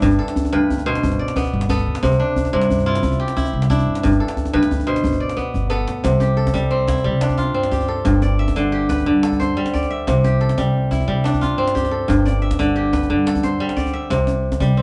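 A steady 12/8 pulse at 119 BPM, counted in dotted quarters, drives this hypnotic West African string and xylophone music in C major, with the chords rocking between G and C. The bright, ringing kora sits up front with crisp fingerpicked arpeggios over a woody, thumpy pizzicato upright bass on steel strings and a deep, saturated djembe struck with hard hands and laced with metal rattles. Played live in one room with light reverb, the band is cut from a longer piece, and a drum fill at 5.4 seconds leads into a new section at 6.0 seconds.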